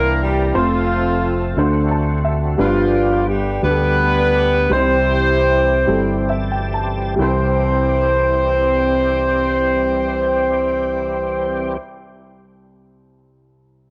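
Gospel in a lilting 6/8, this short cut from a longer piece feels soulful and jubilant. An up-front horn section carries the melody with a tight, smooth-topped sound and octave doubling, while a dark, woody upright piano, slightly detuned, accompanies beneath it. A thick, gritty tonewheel organ holds sustained chords through a slow rotary speaker and chorus vibrato, and a round, punchy fingered electric bass anchors the low end. The piano adds a fill from 1.6 to 2.6 seconds, and the music then slows down from 2.6 to 7.2 seconds, with the piano and organ both adding fills from 5.9 to 7.2 seconds. The harmony moves from C9 through F, D7 and G before settling on C. The horns, organ and bass stop at 11.8 seconds, leaving the piano alone to ring out under light studio reverb. The horns, piano and organ carry a cassette-tape coloring that suits the homemade feel.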